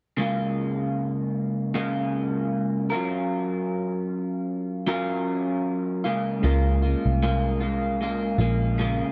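Sunny and nostalgic, this indie pop excerpt with a gentle 16th-note swing opens on an up-front, slightly broken-up picked electric guitar through a small old amp, coloured by analog chorus and warbly pitch drift over Db6 and Gbmaj7 chords, before a dark, round, foam-muted picked bass and a clean tine electric piano with cassette-tape character join at 6.4 s, all set in a dry, close 1970s-style studio sound with light reverb.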